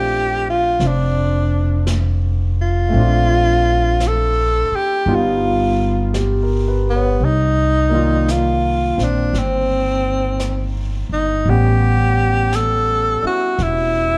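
Swung eighths at a slow 56 BPM in 4/4 carry this tender, late-night jazz ballad fragment, where a breathy, close-miked tenor saxophone with vibrato takes an up-front solo through the first 7.2 seconds over a concert grand piano with deep bass, long sustain and audible action noise, a woody, thumpy pizzicato upright bass sitting forward, and a brush kit of snare and hi-hat that enters low in the mix at 0.8 seconds, framed by light reverb and a dark, warm production.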